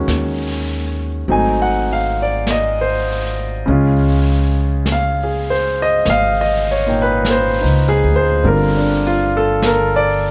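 A dark, softly reverberant production frames this intimate, late-night jazz ballad fragment, swinging gently at 50 BPM in 4/4. A clear, up-front grand piano carries the accompaniment with its action noise audible, moving through Ebm7, Ab7b9 and Dbadd9 before landing on G5. Beneath it, a woody pizzicato upright bass sits low, while a vintage brush kit with a rolled-off top enters at 0.1 s, its brushed snare and hi-hat kept far in the background.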